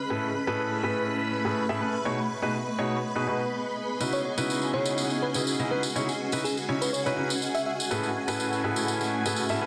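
A clear, woody upright piano sits up front with a delayed riff from 0.1 seconds, leading this soulful, bittersweet piano house excerpt through Amaj9, G#m7/B and C#m11 chords. Behind it, shimmering vintage string-machine violins hold sustained chords with ensemble chorus, and a cloudy, evolving granular pad adds a blurred, full-bodied haze with its own reverb. An acoustic tambourine enters at 4.0 seconds, and a sparkling, bell-like FM electric piano sings a warbling melody with chorus and delay from 4.1 to 7.7 seconds, all set in a lush hall within a dense, heavily limited modern mix.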